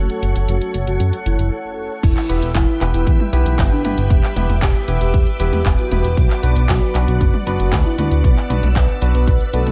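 A soft, octave-layered synth lead with a round, dark tone colored by phaser, cassette tape and delay carries the melody over lush string machine chords, barky tine electric piano stabs with vintage sampler grit and a glossy, up-front chorused synth bass, while a house drum kit with bright hats, handclaps, toms and crash cymbal joins at 0.1 seconds and a punchy electronic kick arrives at 2.0 seconds after a brief break, giving this danceable, melodramatic italo disco excerpt its drive as the chords move from F#m to Em and Bm.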